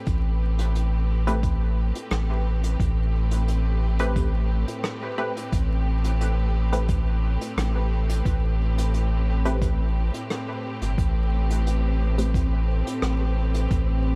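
A steady, straight 4/4 pulse at 88 BPM anchors this hazy, meditative ambient dub excerpt in A minor, built from a muffled, pitched-down electronic kick and a dark, smooth vintage brush kit whose hi-hat and rim click carry a dub echo. Underneath, a round sine sub bass sits up front, deep and sustained between G1 and A1. A lush, distant string section holds a single Am9 chord with gentle vibrato throughout, while from 1.3 seconds a muted, detuned sawtooth chord stab with a quick filter pluck and short decay drifts through chorus and dub echo. Near the close, at 11.6 seconds, an airy, breathy wind-like noise texture fades in slowly in the background on a tuned C4, trailing its own reverb. The whole excerpt rests in a small room ambience dusted with vinyl crackle, giving it a worn, intimate haze.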